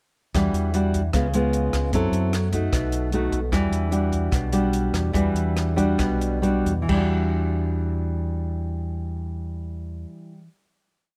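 A dry, close-miked and intimate sound frames this short, melancholic bossa nova piece in E minor at 129-152 BPM, where an up-front classical nylon-string guitar plays thumb bass and syncopated plucked chords through Em9, C#7, F#m7b5 and B7, a round, dark fingered electric bass plays dotted root and fifth figures, and a compact cocktail kit with dark cymbals, punchy kick, hi-hat and rim click keeps a soft groove until 7.0 seconds, as the tempo slows from 3.5 seconds into a final chord held from 6.9 seconds.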